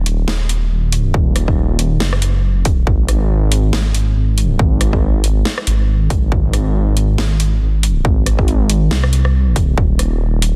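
A dark, detuned saw bass dominates this deep dubstep excerpt, its saturated unison sawtooth and sine layers rumbling and beating from Eb1 to C2 with a fast attack and long sustain, sitting up front for the full 10.6 seconds. The dubstep drum kit enters at 0.1 seconds with a huge snare, rim clicks and metallic hi-hats, layered and tape-tinged and sitting lower in level than the bass. A punchy electronic kick joins at 1.1 seconds and drops out at 9.9 seconds, placed forward in the mix alongside the low end. The groove runs at 139 BPM in 4/4 with a half-time feel and a 57% swing on the sixteenths, giving a cavernous, meditative mood. Digital ambience surrounds the parts, and the dense, heavily limited modern master keeps the sound tightly packed.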